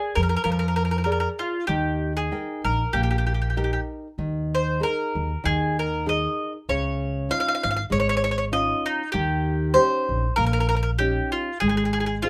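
Romantic and sunny, this short cut from a longer Italian folk serenade sways with a gentle swing, its tuning sitting slightly low at A4 = 437 Hz. A bowl-back mandolin carries the melody up front, its picked double strings sounding warm, while a classical nylon-string guitar fingerpicks a dark accompaniment with the mellow dullness of old strings. From 0.2 s a woody upright bass joins up front with plucked steel strings. The parts move through a gentle chord progression in light reverb.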